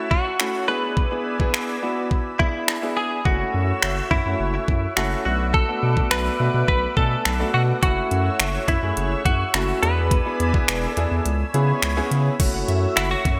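Dance-pop at 105 BPM in F# minor, this bittersweet yet energetic cut from a longer piece opens with a bright, twangy clean electric guitar melody out front with analog chorus and digital delay. Under it sit a clear, polished baby grand piano and a lush, warbling detuned unison pad, both pumping to the sidechain, over a smooth R&B kit of knocking kick, finger snaps, hi-hat and crash in gated reverb. A deep, saturated sub bass enters at 3.3 seconds, the kick drops out briefly at 11.3 seconds, and a tight sequenced synth arpeggio with phaser joins in the background at 12.4 seconds, all wrapped in a lush hall and bright 1980s-style digital sheen.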